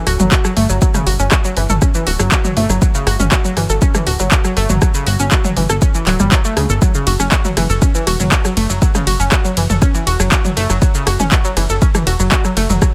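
A punchy, overdriven electronic kick sits up front from 0.3 seconds, driving this hypnotic melodic techno excerpt at 120 BPM in a straight 4/4, in F# phrygian. Around it, an overdriven house drum kit adds handclaps, bright hi-hats, ride cymbal, rim clicks, shaker and toms. A dark, funky analog bass built from sawtooth and pulse waves plays low with a fast attack, a filter pluck and a moving notch, pumping against the sidechain. Above it, a round analog pluck of sawtooth, square, triangle and noise layers with ring modulation and a filter sweep spins arpeggios through chorus, sidechain pumping and dub echo. The harmony moves from G5 to F#m at 6.8 seconds, and a digital ambience surrounds the whole mix.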